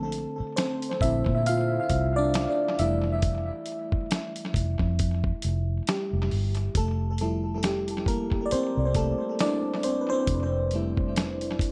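Light reverb and a digital ambience give this short neo-soul cut from a longer R&B piece an echo-heavy sheen, with tape echo trailing both the electric piano and the drums. At 68 BPM in 4/4 with a 16th-note swing, the mood is soulful and relaxed, settled in F major as the harmony moves from Bbmaj9 to Fmaj9 at 2.8 seconds. Up front, an FM electric piano carries the solo across both sections, its glassy, bell-like attack decaying through a shimmer of chorus and a faint noise layer. Beneath it, a vintage muted fingered electric bass sits low and round, dark and punchy from its foam mute and amp. A dusty, sampler-style drum kit, compressed and gritty, joins at 0.1 seconds with a thumpy kick, a medium-tuned snare and hi-hat, placed up front in the mix.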